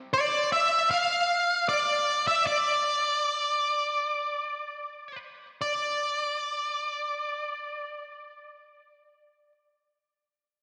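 In a straight 4/4 at 76 BPM in D minor, this cathartic, cinematic rock excerpt features a dark, fuzz-drenched octave-fuzz electric lead guitar, picked and placed up front, that carries the melody between D5 and F5 from 0.1 s to 9.5 s, shifting into a new section at 5.6 s, its distortion trailed by slapback echo and digital delay and bathed in a lush 2.2-second hall reverb that gives the whole an arena-sized scale.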